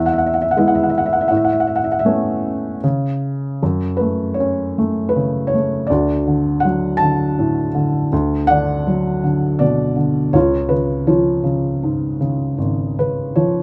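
Close, detailed microphones and a light reverb place a felt-muted upright piano up front, its soft, intimate tone carrying a mellow, short-sustained touch across the 13.6 seconds of this fragment cut from a longer piece. The solo is a peaceful, tender classical miniature in 3/4 at 80 BPM, played with rubato in A major and tuned to A4 = 438 Hz, opening on E and Aadd9 before a brief chordless moment at 2.8 seconds. At 3.6 seconds it turns toward F# harmonic minor, moving through F#m, D and Bm/D before settling on C#, with the piano ranging from G#1 to A5.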